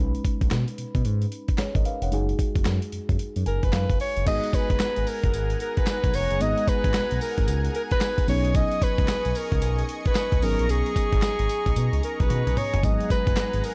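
Slick and confident, this new jack swing cut in G# minor rides a swung 112 BPM groove, with a gritty, compressed sampler-style drum kit up front (thumpy kick, snare, hi-hat, handclaps, tambourine, toms and crash) over a smooth, gliding sawtooth synth bass with vibrato. A soft, round FM electric piano with chorus and phaser carries the chords and plays a fill before a warm, subtoned alto saxophone with delay takes the jazz-style solo melody from 3.5 s. A lush, airy unison pad joins at 4.3 s as the harmony moves through B6/9, F#sus2 and G#m9 chords, and a drum fill arrives near the end of this dark, dry and warm production.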